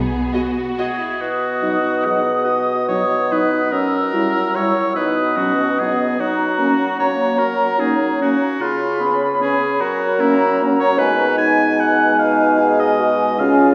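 In a reverberant hall, this festive, elegant classical fragment in B major sways in a rubato 3/4 at 133-163 BPM, opening with lush bowed violins, viola and cello strings that fall away within the first 1.2 seconds as a clear, up-front oboe, airy flutes, a dark clarinet, a mellow bassoon and a French horn section holding sustained chords carry the rest through to 13.7 seconds.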